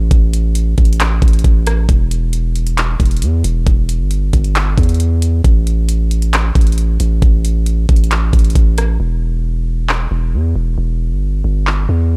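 A half-time 4/4 groove at 135 BPM drives this hazy, ethereal cloud-rap excerpt in E minor, where a smooth, up-front electronic R&B kit of knocking kick, metallic hi-hats, handclaps and rim clicks, re-recorded in a small room, pairs with a deep, sine-toned 808-style bass with a fast attack and long decay, all in a dark, dry production that shifts to a new section at 9.0 seconds.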